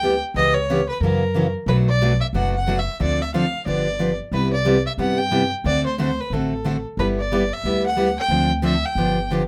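Acoustic string swing in the jazz manouche style, this swinging, playful fragment from a longer piece pairs an up-front bowed violin, biting and earthy with light vibrato, carrying the melody, with a bright, full-bodied picked steel-string guitar comping through chords such as C#m7b5, F#7, Cmaj7 and G6, all underpinned by a woody, thumpy pizzicato upright bass on gut strings, with a touch of light reverb.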